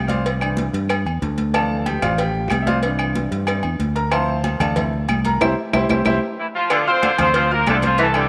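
A moderate plate reverb gives this fiery, danceable salsa fragment in D minor a roomy glow at a brisk 186 BPM, with a clear, present grand piano leading up front over a dark, round fingered electric bass as the harmony moves between Cadd9 and Dm7. Ringing agogo bells and timbales sit close, while thick-skinned congas, a tight high-tuned cowbell and woody claves fill the background, with a drum fill and band accent arriving at 5.4 seconds. A punchy vintage horn section with tape echo takes the melody at 6.4 seconds, joined by a mellow, vibrato-laden saxophone section on a second line at 6.7 seconds.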